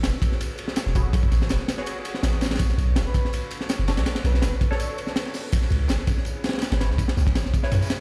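This drum and bass cut, steeped in jungle, feels dark and frenetic, built on a crunchy, gritty breakbeat kit up front with a punchy kick, a high-tuned snare, hi-hat and ride, all saturated and rolled off at the top. A second, quieter layer of the same breakbeat sits in the background, its hats, snare and tambourine thinned by high-pass filtering. Beneath them a deep, sine-like 808-style bass holds long, tube-saturated notes, while a warbling, nostalgic pad with detuned, lo-fi character and chorus sustains chords from Amaj13 through Bm9 to C#m7. Shortly after the opening, a muted, evolving dub chord stab joins with phaser, cassette grit and dub echo, and from 3.1 to 4.5 seconds a soft, breathy, flute-like synth lead with vibrato hovers on a single note. The whole piece is heard through a stone-room reverb, as if played on a big sound system in a bare room, and the kick drops out at 7.7 seconds.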